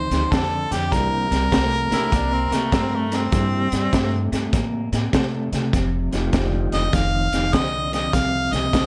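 A clear harmonica opens this swaggering, soulful electric blues shuffle, its overdriven melody carrying light vibrato and scooped notes. From the start it is joined by a picked electric guitar riff through a small old amp, slightly broken-up and colored by tremolo, and by a woody, thumpy upright bass on gut strings. A crunchy breakbeat kit arrives almost at once, dark and gritty with a high-tuned snare, tight kick and hi-hat, sitting up front beside the harmonica. At 0.9 seconds a mellow tonewheel organ adds soft, flute-like chords with key click through a slow rotary speaker, as the harmony moves from F9 to C9 and later back to F9. A punchy tenor saxophone plays a forceful second line with vibrato and scooped notes from 1.9 to 4.3 seconds, and the swung groove sounds close and dry in this short cut from a longer piece.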